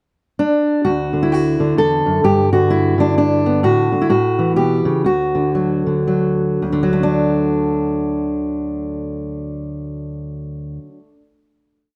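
In a lilting, swung triple metre that slows between 3.6 and 6.6 seconds, this short, nostalgic solo folk piece features an up-front fingerpicked steel-string acoustic guitar with a dark tone and audible finger squeak, rolling arpeggios through a free-flowing melody over D, G5, D/A and A7 before settling on a final D chord, all in light reverb.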